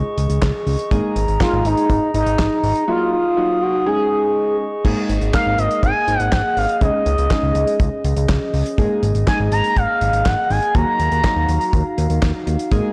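This upbeat, wistful synth-pop excerpt opens on ethereal, glassy glass harmonica chords and a thick sawtooth analog bass sitting up front, with a damped 70s drum kit (dry and dark, with a tight kick, hi-hat, handclaps and crash) arriving at 0.2 s. Round, chorused analog keys with a filter sweep join at 0.9 s. At 1.4 s a smooth, expressive portamento lead enters up front, its vibrato-laden sawtooth voice treated with chorus and delay, over a repeating cycle of mostly suspended chords, all in a blown-out, overdriven mix with moderate stage reverb and small-room ambience.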